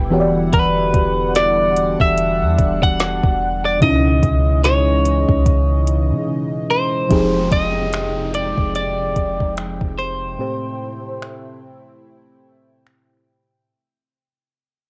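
Moody and sensual, this contemporary R&B excerpt moves at a slow 73 BPM in 4/4 with a swung sixteenth-note feel, cut from a longer piece. A clean, compressed electric guitar carries the melody up front, its picked tone touched by subtle chorus and cassette tape color, over a mellow FM electric piano with a warm, round, dark tone and a fast attack, and a shimmering, retro pulse-width pad holding sustained chords beneath. A soft, deep 808-style bass with a sine-like roundness anchors the low end until 10.4 s, while a smooth, produced drum kit of soft kick, woody snare, metallic hi-hats and finger snaps enters at 0.5 s. The harmony drifts through lush ninth chords, starting on Em9 and later moving to Fm9 as an electronic downlifter slides in at 7.1 s and the music begins to fade out. The dry, intimate sound has the dusky, band-limited character of a home cassette recording.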